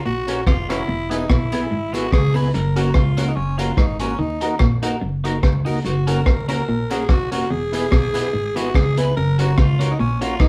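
A gritty, growling tenor saxophone leads this joyful ska excerpt at 145 BPM with a light swing, its raspy solo line carrying light vibrato over a muffled vintage drum kit with a punchy kick up front, a woody pizzicato upright bass and tonewheel organ stabs smoothed by chorus vibrato. Tucked in the background, a twangy, slightly broken-up electric guitar plays a riff with tremolo while a clean, picked semi-hollow guitar adds accompaniment through phaser and tape echo, and a jingly tambourine sits very quietly beneath. The band plays live in one room with a wet studio reverb and vinyl crackle, moving through Gb, E and Ebm chords.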